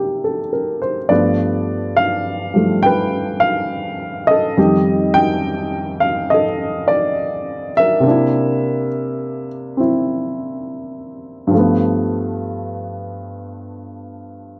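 A woody, up-front upright piano plays solo jazz with a relaxed swing, its short-sustained chords moving through C9, G9 and F9 in a wet studio reverb and a cassette-tape haze across this 14.6-second excerpt of a longer piece.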